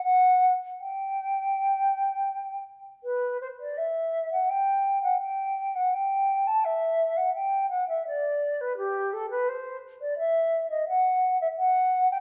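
Rubato phrasing floats over a loose 84 BPM in 4/4 in this flowing, serene baroque-style fantasia in G major, tuned to A4 = 438 Hz and cut from a longer piece. A mellow wooden flute plays alone throughout, ranging from G4 to A5 with a pure, woody tone, vibrato and soft attacks. It moves into a new section at 3.0 seconds, and a recital hall reverb lingers for 1.4 seconds around the instrument.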